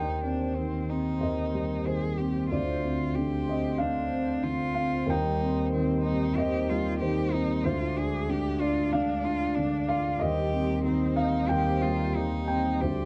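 Reflective and fragile, this neoclassical excerpt in C minor drifts at 93 BPM with a rubato 4/4 feel, anchored by a dark, boxy baby grand piano up front whose long sustain carries accompaniment through chords from Cm/Eb to Gsus4/D and Ddim, while a single bowed cello adds a rich, expressive second line with vibrato and portamento, and a shimmering, retro pulse-width pad with chorus and soft attack holds sustained chords in the background, all set in light reverb for a dark, warm production.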